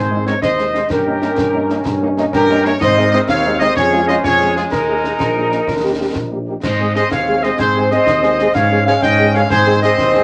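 Spirited and festive, this military-style march for wind band moves at 126 BPM in a straight 6/8 in Ab major, cut from a longer piece and heard in a small, wet room. A mellow trumpet section with light vibrato carries the melody up front, while a pure-toned, expressive flute group and a smooth woodwind section in the background add second lines, a clear trombone section holds sustained chords, and a dark tuba anchors the bass. Rounded French horns join the accompaniment at 0.1 s, and at 0.3 s close, dry concert snare, bass drum and shadowy clash cymbals come in.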